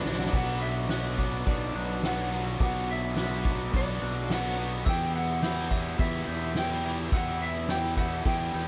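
Melancholic, brooding post-rock at 106 BPM in 4/4, this excerpt opens with a brief soft-mallet drum fill before a growly, fuzzed fingered bass and a roomy, distant-sounding kit with a fat snare push up front, two bright distorted guitars play picked riffs in the background, a dark, slightly broken-up slide guitar carries the melody through analog delay from 0.3 s, a ringing glockenspiel struck with hard plastic mallets adds airy arpeggios, and a very quiet, warbling lo-fi pad enters at 0.7 s with sustained chords over a Bm to Em change, all under light reverb.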